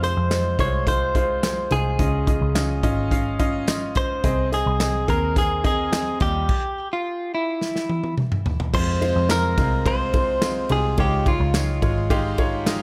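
Piano-driven pop in a driving, earnest mood, cut from a longer piece, with a bright, compressed clean electric guitar carrying the melody over a woody, intimate upright piano whose action noise and long sustain sit up front, a dark, foam-muted picked bass and a punchy, airy country drum kit with handclaps. A jingly tambourine joins in the background at 0.3 seconds, and a stop at 6.5 seconds gives way to a drum fill at 7.6 seconds before the second section begins at 8.7 seconds. The guitar carries a digital delay, and the whole band sits in a moderate large studio reverb.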